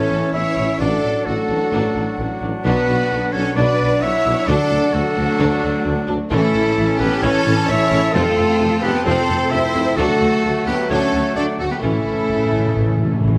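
Moving in a straight 4/4 at 131 BPM, this excerpt of heroic adventure film score feels adventurous and soaring, with a lush violin section carrying the melody in the background while a second violin line, a clear solo oboe, an airy metal flute and a soft-attack clarinet add second lines over chords that begin on Aadd9 and pass through Bm, D and F. Warm French horns hold sustained chords with a tight, bright, very quiet trombone section, while a distant viola section, a ringing fingerpicked harp, a rich, focused cello section, a smooth double bass section and a mellow, roomy tuba fill out the accompaniment and bass. Timpani struck with hard mallets, close and dry, enter at 6.3 seconds and return for a fill from 11.8 seconds, all set in a moderate recital hall reverb.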